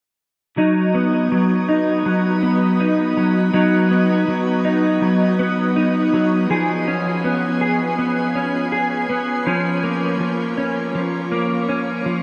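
A clean electric guitar enters at 0.6 s with fingered arpeggios, its dark tone sitting up front and coloured by analog chorus and digital delay as it moves through B/F#, C#7 and A#m/E#. This short dream pop cut from a longer piece drifts at 81 BPM in a straight 4/4, its ethereal, hazy mood deepened by a long shimmer reverb that bathes the guitar until 12.2 s.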